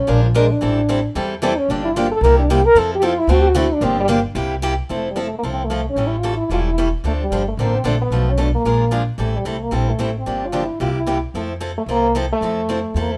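A mellow French horn opens with a featured solo through the first 4.9 seconds, its light vibrato and distant, roomy classical tone floating over a lively, charming jazz manouche groove at 224 BPM in F major with a swung 4/4 feel. Up front, a bright, boxy parlour-style steel-string guitar picks out the accompaniment while a woody, thumpy gut-string upright bass plays pizzicato underneath. The horn carries the melody into a second section at 4.9 seconds, moving through swinging seventh-chord changes that settle on Fmaj7 as the piece is cut off at 13.2 seconds, all under light reverb.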